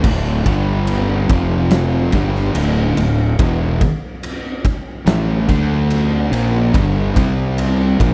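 A straight 4/4 pulse at 72 BPM drives this sludgy, hypnotic stretch of stoner and doom metal in D minor, cut from a longer piece and lasting 8.1 seconds. An oversized low-tuned drum kit sits up front with a boomy kick, fat snare and dark crash and ride cymbals, its saturated, gritty sound pumping in a big room. A growly, overdriven fingered bass with fuzz holds down the low end beside a thick, warm, picked fuzz guitar in the foreground, which plays a riff over chords moving from D5 through G5 and F5 to D minor, then G5 and C5 near the end. Meanwhile a double-tracked overdriven electric guitar plays the riff in the background of an otherwise dry mix.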